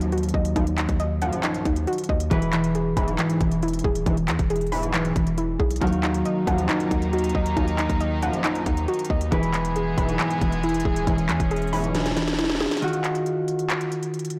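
Trap hip hop in a melancholic, dark mood at 137 BPM in half-time and Eb minor, cut from a longer piece, where a ringing, thumb-plucked Celtic harp and gentle, rounded pluck arpeggios with chorus and delay sit over a punchy, decaying 808-style bass and an up-front trap kit of hard-clipped kick, sharp snare, crisp hats and handclaps, while an edgy, nasal sync-sweep polysynth adds detuned stabs in the background from 0.6 seconds and a distant, floating bowed string section holds sustained chords from 5.8 seconds, before a drum fill at 11.9 seconds leads into a brief break, the whole track sounding blown-out and overdriven with light digital reverb.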